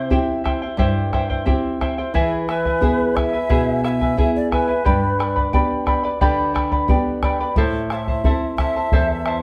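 A large quena with an airy chiff and vibrato carries a festive yet wistful melody over shimmering fingerpicked charango and nylon-string guitar with audible finger squeak, joined at 0.1 seconds by a round, close bombo, in this 9.4-second Andean folk excerpt at 88 BPM in A minor, moving through C, E, G and Am and played live in one room with wet large-studio reverb.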